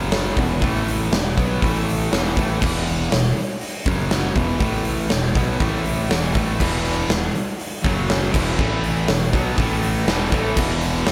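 A distorted, compressed electric guitar and a thick fuzz guitar open this anthemic, cathartic stretch of quiet-loud alternative rock alongside a growly, overdriven fingered bass. Both guitars play riffs, with the fuzz guitar sitting in the background, moving mostly between E5 and A5 power chords with occasional turns to F#5. A huge acoustic arena drum kit sits up front from 0.1 seconds, with bright cymbals, a medium-tuned snare and a punchy kick driving a straight 4/4 feel. At 6.6 seconds a second, double-tracked overdriven guitar slips in behind the others, thickening the riff. A lush hall reverb gives the whole performance a big arena sound, and the clip is cut from a longer piece.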